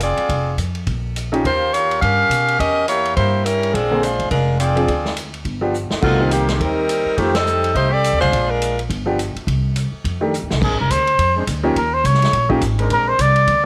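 Brassy and energetic, this short big band swing excerpt opens with a bright, up-front saxophone section carrying the melody over woody, thumpy pizzicato upright bass and a natural drum kit with punchy kick, crash, ride, hi-hat and snare, while a clear, intimate baby grand piano with audible action noise makes a brief entry at 1.3 seconds and comps from 3.9 seconds. Drum fills at 5.7 and 10.3 seconds and a band accent at 7.3 seconds punctuate the opening stretch. At 10.6 seconds a forceful, vintage-toned trumpet takes a solo over sustained chords from a close-miked trombone section, all set in a small room with light reverb.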